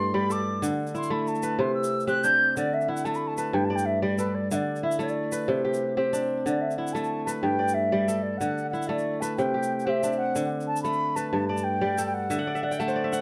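A wooden flute and a kora open this excerpt of joyful West African string music, with the flute's pure, woody voice carrying a solo melody over the kora's ringing arpeggios. A grainy, compressed tube shaker slips in at 0.3 seconds and stays low in the mix, adding a bright, saturated shimmer. The piece moves at 123 BPM in a straight 12/8 lilt, set in D mixolydian and circling through G, D and C chords. From 2.6 seconds the music settles into a second section, where the fingerpicked kora sits up front, crisp and bright with tape echo, while the flute's vibrato, crisp attack and lifted highs give the tune an airy lift. At 12.3 seconds the kora steps forward with a short fill. A small room's moderate reverb wraps the whole performance in a dark, warm production.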